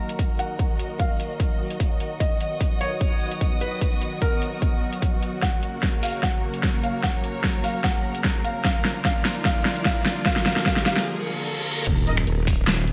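A felt-muted upright piano leads this heavy, menacing wobble dubstep excerpt in Eb minor at 149 BPM in half-time from the very start, its soft, intimate melody carrying audible action noise through a low-pass filter and digital delay. A lush, detuned unison pad with chorus and phaser and a distant, bowed string section with vibrato pump under the punchy overdriven kick and a big-room kit of huge snare, metallic hats, finger snaps, handclaps and crash, while a riser, reverse cymbal and sub drop build in the background from 8.4 seconds. The piano and strings stop just before the drop at 11.9 seconds, where a saturated, resonant sawtooth wobble bass hits on Eb1 and a soft-attacked brass ensemble lands a single delayed stab, all in light digital ambience with lossy artefacts.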